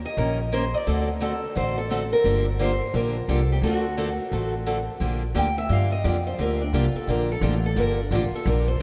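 Jazz manouche in G minor at a swinging 174 BPM, bittersweet and virtuosic, with a woody, gut-strung pizzicato upright bass, a bright picked archtop guitar carrying the melody with audible finger squeak, and a boxy parlour steel-string guitar that comps before taking a solo at 5.0 seconds, all up front yet bathed in the long wash of a vast, echoing cathedral.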